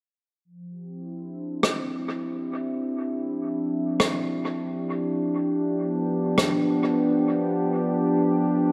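An analog synth pad with a warbling, wave-folded, soft-attacked tone fades in at 0.4 s, holding sustained Dm11 chords under chorus before shifting to G7 at 5.2 s, while an up-front, natural-sounding acoustic rim click trails dub echo from 1.6 s to 6.5 s, all within a wet echo-chamber reverb that gives this short ambient dub piece, cut from a longer work, a deep, meditative calm.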